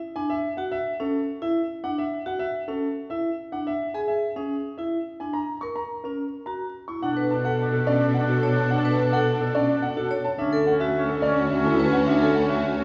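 Heard from further back in a reverberant recital hall, this hypnotic, meditative minimalist classical piece in 3/4 opens with a clear concert grand piano carrying the melody, its action noise audible, over ringing, metallic vibraphone arpeggios with a fast motor vibrato, and at 7.0 s a mellow oboe second line, lush bowed strings holding sustained chords and an expressive cello bass with portamento join in, the passage being cut from a longer work.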